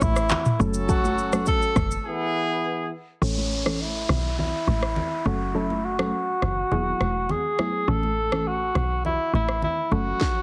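Afrobeats at 103 BPM in A major, sunny and breezy, where a breathy, intimate tenor saxophone with vibrato and scooped notes carries the melody through low-pass filtering and tape echo, a distant, roomy horn section plays a second line until 2.9 seconds, a woody, punchy log drum bass and an electronic afro-pop kit with deep kick, sharp snare, handclaps, rim clicks, shaker and toms sit up front, ringing high-tuned congas play in the background, a soft, round, dark pluck with chorus enters at 0.6 seconds, and electronic downlifter and riser effects arrive with a filter sweep at 3.2 seconds over A, F#m, E and Eadd9 chords, all under light reverb and a heavily compressed radio sound in this excerpt from a longer piece.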